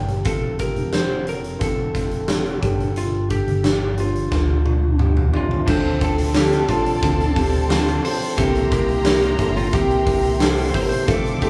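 Dramatic and bittersweet, this piano-driven pop excerpt moves at 89 BPM in a straight 4/4, set in D minor. A clear concert grand piano with audible action noise and a deep low end carries the accompaniment, joined from the outset by a glossy, chorused synth bass with a retro pulse-wave character and a huge arena drum kit whose punchy kick and medium-tuned snare sit up front in a big, natural room. Just after, a lightly driven lead guitar, dark and slightly broken-up, picks out the melody over chords moving from F through Gsus2 to Dm7, and a drum fill from 4.3 to 5.7 seconds leads into the second section. At 5.7 seconds the arrangement fills out with a close, lush violin section playing a smooth second line, a very quiet string section holding focused sustained chords, and a clean, compressed twelve-string electric guitar picking a riff, while the harmony later moves to C7. The band sounds as if it is playing live together in a small room, lightly touched with reverb.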